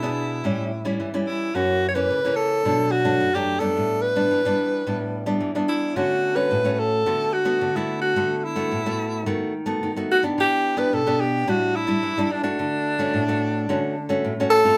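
A bright, close-miked alto saxophone sings a jazz-style solo melody with vibrato over fingerpicked acoustic nylon-string guitar in a classical style, its finger squeaks audible, as both sit up front in this nostalgic, bittersweet samba at 109 BPM in D major, played live together in a small room with a wet ambience.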